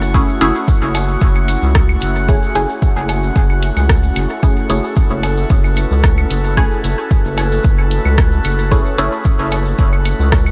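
A dry, close-sounding mix carries this cavernous, nocturnal dub techno cut from a longer piece, sitting on a single F#m7 chord in F# minor at 112 BPM in a straight 4/4. A punchy, tape-warm kick sits up front beside a round, deep analog bass, while an analog drum machine's hi-hat and rim click and a filtered, detuned sawtooth chord stab each trail dub echo, with phaser on the stab. An airy, breathy pad and a glassy, drifting harmonics texture breathe with sidechain pumping, joined by a grainy acoustic tube shaker and background cowbell and claves from 0.9 seconds.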